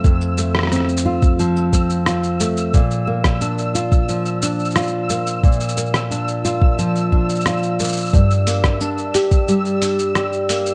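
Hopeful and pastoral, this folktronica fragment sets an up-front, fingerpicked nylon-string guitar playing classical-style arpeggios over F, Bb and Gm against a soft, tape-warm electronic kick that drops out at 9.4 seconds, a muffled, compressed sampler-style kit of hi-hat, rim click and shaker, and a faint, high granular texture that flickers mellowly in its own reverb, with the mix wrapped in a dark production and light digital ambience.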